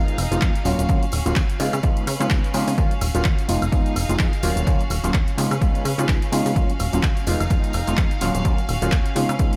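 Filtered disco house with a sensual, funky groove and a light swing on the sixteenths, cut from a longer piece. An overdriven, reedy electric piano played through a combo amp carries the accompaniment, its gritty tone colored by a phaser and pumping against the kick, while a clear studio violin section holds sustained chords above it with light vibrato, a biting edge and a smooth top roughened by vintage 12-bit sampler grit. Underneath, a plucky analog bass blends sawtooth, square and sine waves with detuning and wave-folding, its fast attack and decaying filter pluck thickened by tube saturation. A punchy, overdriven analog drum machine supplies cabasa, handclaps, hi-hat and woodblock, joined by a tambourine sitting in the background with maracas and group handclaps, while an overdriven electronic kick drum enters at 0.4 seconds and stays up front. The harmony circles through Fm7b5, Ebm9 and Db7 under light reverb and digital ambience.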